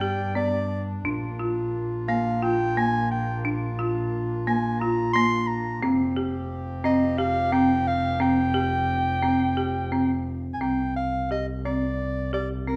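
Set in a straight 7/8 at 176 BPM counted in eighths, this pensive yet urgent contemporary chamber piece is cut from a longer work. A mellow soprano saxophone carries the melody up front in a jazz style, with light vibrato, soft attacks and scooped notes. Beneath it, a folk marimba struck with hard mallets spins arpeggios with a woody, rustic, percussive bite, and a bowed double bass played sul tasto lays down a dark, airy, intimate bass line. A clear woodwind section holds sustained chords in a classical manner until 10.6 s, when the harmony shifts to a Csus2 and the remaining trio moves into a new passage. The harmony travels from G to Bb and then Fsus2, all set in the reverberant glow of a recital hall.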